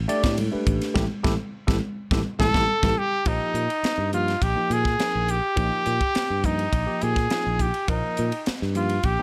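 A bright, forceful trumpet with light vibrato and scooped notes takes the lead from 2.4 seconds, playing up front over a funky, intense electric jazz fusion groove at 104 BPM in a straight 4/4. Beneath it, a warm fingered electric bass and a clean tine electric piano coloured by phaser move from A7sus2 to Bb7sus4 at 3.3 seconds, while a crisp, punchy drum kit with dark cymbals and a high-tuned snare joins the band accent and plays a drum fill alongside an electric piano fill. Ringing congas sit in the background until 3.0 seconds, and light reverb surrounds this excerpt cut from a longer piece.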